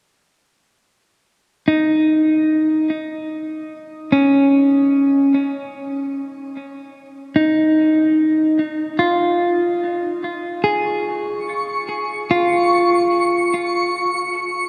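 A clean electric guitar leads this peaceful, serene ambient excerpt, picking warm, compressed arpeggios up front from 1.7 to 13.5 seconds, wrapped in delay and shimmer reverb over a single Db major chord at 74 BPM in 3/4. At 11.3 seconds a twinkling granular texture with an octave-up shimmer and slow attack enters high above, sustaining with a long release until the cut at 14.7 seconds. The whole excerpt sits in a vast, wet cathedral reverb with the grain of cassette tape.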